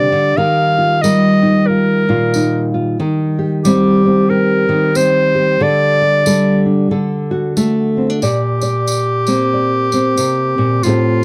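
Close, dry and lightly reverberant, this excerpt has the intimate sound of a 1970s studio, with the clarinet and guitar placed up front. It is a melancholic, wistful acoustic folk piece for a small group, moving at an unhurried pace with a gently swung feel. A bright, classical-style clarinet carries the second line and takes a solo from the start until 8.2 seconds, ranging from F4 to F5. Beneath it, a warm nylon-string guitar, thumb-plucked in a classical manner, supplies the accompaniment throughout, while a jingly tambourine with a live-room quality sits quietly in the mix from 1.0 seconds. The harmony drifts from Ebadd9 through Cm7/Eb to a Dsus4 that settles on D, before a new section opens on Bbadd9 and the piece is cut off mid-flow.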